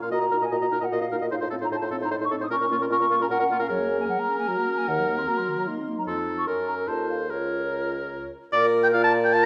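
Lively and spirited, this quick classical-period movement for wind quintet in triple time sets a hollow, pure silver flute melody with a crisp attack over an up-front oboe second line touched with vibrato. A mellow French horn in the background and a warm clarinet fill out the accompaniment, while a dark bassoon with light vibrato carries the bass. The players sit in a reverberant recital hall, and this passage, cut from a longer piece, arrives on a Bb chord at 8.5 seconds.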